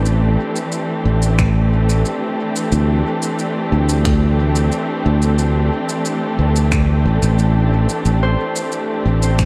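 Lush, woody bowed strings holding an Am7 chord with sul tasto vibrato and a growly, bright fingered electric bass sitting up front beneath them open this deep, hazy ambient dub piece. A straight 4/4 pulse of overdriven electronic shaker and finger snaps, soaked in dub echo, joins almost at once, followed at 1.4 seconds by a deep, layered electronic kick set in the background. A ringing fingerpicked harp slips in with tape-echoed arpeggios at 8.2 seconds before this fragment of a longer piece cuts off.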